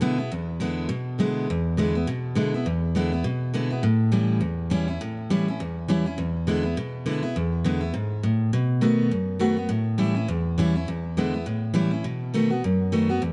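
A full-bodied, up-front picked steel-string acoustic guitar plays alone for the whole 13.3 seconds of this upbeat, rollicking rock fragment, swinging its eighths at a brisk 204 BPM in E mixolydian with the tuning at A4 = 445 Hz, moving from E7 through A7 and B7 in a bluesy cycle that tightens toward the close, all set in light reverb with a softened, rolled-off top end.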